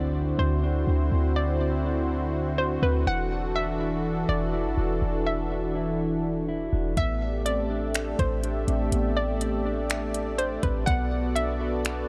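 A half-time 4/4 groove at 123 BPM anchors this spacious, ethereal cloud-rap fragment in A dorian, cut from a longer piece. A clean 808-style bass sits deep and up front, its sine tone striking fast and decaying into a dark boom. A detuned sawtooth analog pad holds smooth, slow-attack chords with chorus and sidechain pumping, moving from D9 through E9sus4 and Am11 to Bm7. Above it, a hollow, bouncy square-wave pluck carries the melody through chorus, a low-pass filter and delay, while a mellow, fingered electric guitar adds dark, clean arpeggios through its own filter and delay. A very quiet electronic impact marks the opening from 0.0 to 1.1 s, and at 7.0 s a produced R&B kit of finger snaps, metallic hi-hat and soft kick joins with a tape-tinged color. Light reverb and digital ambience wrap the mix in an airy, floating space.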